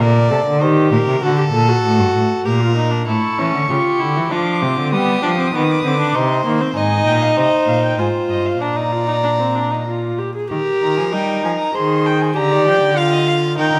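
Driving and serious, this baroque-style fugue for string quartet moves at 98 BPM in 3/4 with a straight feel, set in G minor and cut from a longer piece. From the opening, a violin with light vibrato carries the second line in its middle register, while a close, up-front viola with an airy bow fills out the accompaniment and a rich cello anchors the bass. At 3.1 seconds a second violin enters high above with the melody, its tone dark and nasal yet set back at a distance. All four players use gut strings in period style, giving the ensemble a reedy edge. The harmony travels from G minor through dominant and subdominant colours, reaching toward E-flat and A-flat before closing on B-flat over D, all heard in a moderate scoring-stage reverb of about 1.5 seconds.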